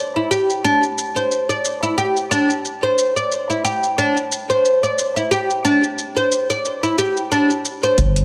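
A lush hall reverb with a 2.4-second tail gives this mystical, earthy excerpt of organic downtempo a spacious, enveloping sound, tuned slightly low to A4 = 436 Hz. At 90 BPM in 4/4 with a light 16th-note swing, a bright, woody oud sits up front from 0.2 seconds, its plectrum-plucked double strings and fretless tone carrying arpeggios between D4 and D5 through a digital delay over a D9sus4 harmony. Electronic shaker and metallic hi-hat join at 0.3 seconds, set well back in the mix as a produced pulse. At 8.0 seconds, as the oud stops, a round sine sub bass lands on G1 with a fast attack and sidechain pumping, placed prominently beside a very quiet, deep electronic kick. The effect is an earthy acoustic figure drifting over a subtle electronic groove before the low end briefly arrives.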